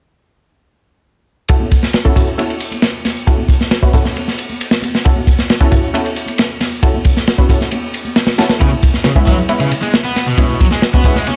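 A crunchy, saturated breakbeat drum kit kicks in at 1.5 seconds with a tight kick, medium-tuned snare and dark ride cymbal, joined by a punchy, detuned orchestra-hit-style synth stab carrying built-in reverb and dub echo, a tape-warm tambourine and ringing, hard-handed congas sitting in the background. This swaggering, funky breakbeat excerpt moves at 135 BPM in F# minor over an F#m7 chord. At 8.6 seconds the harmony shifts to C#m7 as a bright, overdriven stack guitar riff cuts in up front with dub echo, all within a dark, warm production.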